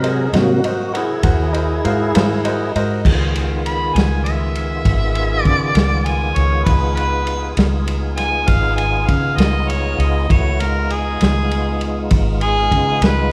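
Set in a recital hall's moderate reverb, this gritty, laid-back slow blues excerpt in 12/8 opens with a lightly overdriven tonewheel organ taking the lead, its key click and slow rotary swirl sitting over bright, woody upright piano accompaniment that stops at 3.0 seconds. A muffled, lo-fi vintage drum kit with a tight kick, ride and crash keeps time alongside a dark, round, foam-muted electric bass placed up front. At 3.7 seconds a jazz-style harmonica with light vibrato steps forward for the solo, while the organ continues with sustained chords underneath.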